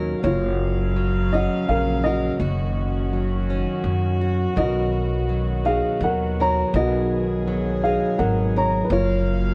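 A dark, lightly reverberant production with lossy compression artefacts frames this nostalgic, intimate acoustic folk-pop ballad in 3/4, cut from a longer piece, where a mellow, boxy upright piano carries the melody from 0.2 seconds over a fingerpicked plugged-in steel-string acoustic guitar, a thumpy, woody pizzicato upright bass sitting up front, and a distant, floating chamber string section holding soft-attack bowed chords through F#maj7, D#m7/F# and Bmaj7.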